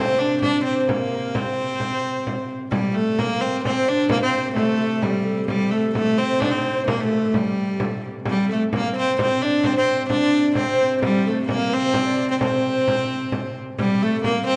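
In a driving 3/4 at 130 BPM, this ancient-sounding medieval dance cut from a longer piece puts a clear, floating viola da gamba melody up front over a smooth-topped, intimate second viola da gamba droning on C3 in the background, with a delicate fingerpicked gut-string lute and a distant, hollow alto recorder with a chiffy attack adding quiet second lines, a small, bright frame drum played with soft hands entering at 0.4 s, and the ensemble set in a wet concert hall reverb with the top end rolled off above 10.4 kHz.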